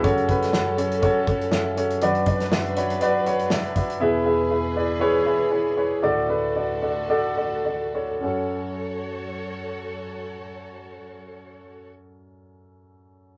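Bittersweet and dramatic, this piano-driven pop passage is cut from a longer piece and moves with a light sixteenth-note swing in four. A woody upright piano sits up front with long sustain, carrying the accompaniment through a chord sequence that moves from F# minor through Bm over F#, E and D before returning to F# minor. Beneath it, a lush symphonic string section holds bowed, vibrato-rich chords with a focused, smooth top until 11.9 seconds. A natural country drum kit, punchy in the kick with a medium-tuned snare and hi-hat, plays only until 4.0 seconds, after which the music slows down until 8.2 seconds, where a new section begins. The whole take has the rough feel of a rehearsal-room recording, wrapped in a short, wet booth ambience.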